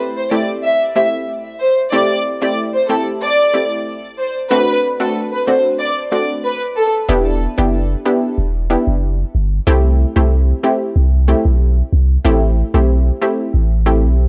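Dancehall at 93 BPM in a straight 4/4, hypnotic and tough, taken from a longer piece and captured with a dry, gritty sound in a small room. A detuned analog pluck with chorus carries the chords from the start, while a lush, bowed violin section with vibrato and tape echo plays the melody until 6.9 s. At 7.1 s a deep sub bass with a pitch-drop attack enters up front as the harmony moves from Em7 through C6 and back to Am7.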